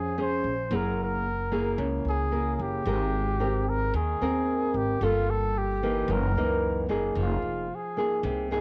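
A straight 4/4 bossa nova groove carries this melancholic, intimate excerpt, with a woody pizzicato upright bass and a dark, thumb-plucked classical nylon-string guitar sitting up front beneath a warm flugelhorn that sings the melody with jazz-style vibrato. The flugelhorn and guitar carry a cassette-tape coloring, and the whole home recording has light reverb and a small-room ambience. The harmony moves through rich extended minor and major chords before settling on Fm7 at 7.2 seconds, where the flugelhorn steps into a brief solo.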